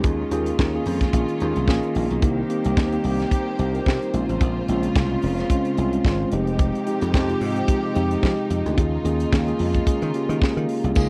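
A dry, close 1970s-style studio sound frames this driving, sultry disco cut at 110 BPM with a swung 16th feel, where a tight funk drum kit with a high-tuned snare sits up front beside a bright, punchy thumbed slap bass, a mellow tine electric piano moves through chords such as Eb9sus4, Cm7, Bbm9 and Fm9, a warm bowed string section holds soft-attack sul tasto chords with vibrato, and a jingly, distant tambourine appears only at 11.0 seconds.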